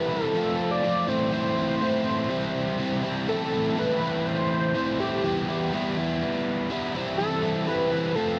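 A biting, overdriven electric guitar and an octave-doubled lead open this rock excerpt together from the first moment, setting a cool, bittersweet mood in a straight, steady 4/4. The guitar plays a picked, double-tracked riff that sits up front in the mix and spans from its low register up into the middle. Above it, the bold, retro lead carries the melody in a narrow upper range, its sawtooth tone full-bodied yet mellow, with a fast attack, sustained notes and a touch of vibrato. Chorus and analog delay give the lead extra depth. The harmony moves from F6 through Am, C and Em before settling on C/E around 7.0 seconds. A moderate spring reverb and a dark, warm production color the whole short passage, which runs continuously to 8.4 seconds as a single section cut from a longer piece.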